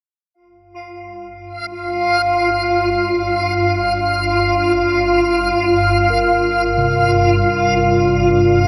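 A fade-in opens this desolate, unsettling dark ambient drone in free time. A reversed, granular swelling texture sits up front from 0.8 seconds, and a low, warbling, detuned swarm with a moving notch joins it at 1.5 seconds, both bathed in their own reverb within a huge, wet space. At 6.1 seconds a close-miked bronze singing bowl, metallic with slow beating and struck with a suede mallet, adds meditative arpeggios through a delay.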